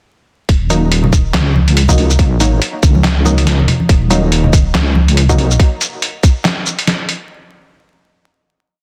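A meditative, cavernous stretch of deep dubstep at 141 BPM in Eb minor, riding a half-time 4/4 feel with a 16th-note swing, built entirely as a drop that opens at 0.5 seconds on an Eb minor chord. Up front, a tight, layered electronic kick anchors the beat while a sampler-style trip hop kit adds a muffled, pitched-down snare, closed hi-hat, shaker and handclaps, its tape-warm, compressed tone sounding re-recorded in a small room. Equally forward, a dark, detuned sawtooth-and-sine wobble bass with chorus spins modulated phrases whose wobble speed keeps changing, sustaining low until it drops out at 5.6 seconds. Sparse, muted chord stabs with a filter pluck and short decay drift through on chorus and dub echo, one mellow shape moved in parallel, while low-tuned acoustic congas with a bright, thin-skinned tone echo in the background. Light reverb, vinyl crackle and a dense, heavily limited master wrap the short piece, with the kit carrying on alone until 7.2 seconds.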